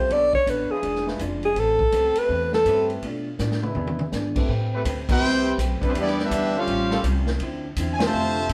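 This big band swing excerpt has a brassy, swinging mood, played live by a band in one stone-walled room. A clear, close-miked alto saxophone with vibrato takes the melody as a short solo up front, ending at 2.9 seconds, while a woody upright piano with long sustain and a clean, picked hollow-body electric guitar supply accompaniment. Beneath them, a thumpy pizzicato upright bass and a vintage drum kit with dark cymbals and a punchy kick keep the swing going, with a drum fill from 3.4 to 4.1 seconds, and a tight trombone section holds sustained chords in the background. At 5.1 seconds a bright, tight trumpet section takes over the melody, joined by a looser, mellow trombone section on a second line. The full band hits an accent at 8.0 seconds, over a minor-key progression rich in ninth and altered dominant chords.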